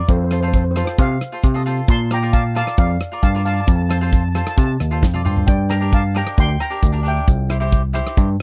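A shimmering steel pan, played with soft rubber sticks in a boxy small room, carries the melody from the opening moment while a crisp, picked cavaquinho plays beside it. This is a carefree, sunny calypso cut from a longer piece, moving through F, Bbmaj7, Gm and C over a clean, bell-like electric piano bass, a tight, airy country drum kit that sits up front and plays a fill at 5.0 seconds, and a grainy egg shaker in the background. The sound is dry and close, like a 1970s studio recording.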